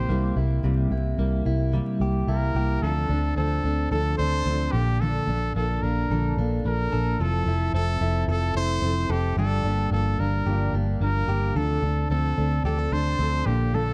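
A straight 4/4 pulse at 110 BPM carries this youthful, bright indie pop excerpt, where a brilliant solo trumpet sings the melody with light vibrato and scooped notes over a full-bodied, fingerpicked jumbo acoustic guitar sitting in the background with audible finger squeak, a clean, compressed direct-recorded electric guitar picking arpeggios with subtle chorus, and a round, foam-muted vintage electric bass up front, all moving from C7 through Dm7, Bbmaj7, Fmaj7 and Gm7 in a dark, warm production with light studio reverb and vinyl crackle.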